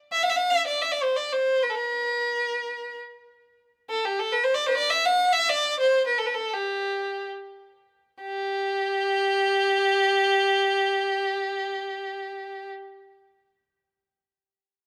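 Unfolding in free time, this excerpt from a longer piece of Arabic maqam music has a stately, warm mood centered on G in maqam rast, tuned to A4 = 442 Hz. A single bowed violin plays solo from 0.1 s to 12.7 s, its rich, smooth, even tone carrying vibrato. Though the violin sits up front, it also has a slightly distant quality. The phrase moves through an opening passage that gives way to a second section at 8.2 s. A small room ambience surrounds the instrument, and the overall sound has the rough character of a home demo mix.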